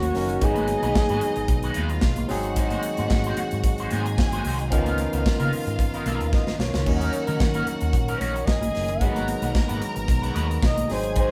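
A breathy, dark flugelhorn carries the melody with vibrato and scooped notes, sounding distant and roomy in a jazz style, playing briefly at the start and returning at 6.3 seconds as a drum fill begins. This is a danceable, glamorous disco excerpt cut from a longer piece, moving at 112 BPM in a straight 4/4 feel, with chords shifting from Abm7 through Ab7 and Db13 to Ebm7 before coming back to Abm7. Underneath, a polished acoustic drum kit sits up front with bright cymbals, a medium-tuned snare and a tight kick, while a round, punchy fingered electric bass drives the low end. A barky tine electric piano heard through a combo amp and a twangy, slightly broken-up picked guitar with wah and spring reverb fill out the accompaniment, and very quiet high-tuned congas ring close by. A lush, bowed string section adds a clear second line from afar, and a mellow, close-miked French horn section holds soft sustained chords, all captured as a band playing together in one room with moderate studio reverb.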